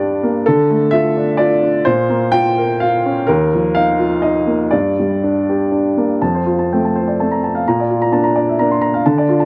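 A woody, natural upright piano sits up front in a moderate studio reverb, touched with analog delay, in this tender, peaceful excerpt of neoclassical minimalist piano. Playing solo in a rubato 3/4 across a range from Eb2 to C6, it moves through Dmadd9, Bbmadd9, Ebsus2 and Gm before a new section begins at 6.2 seconds, settling on F and then Bb.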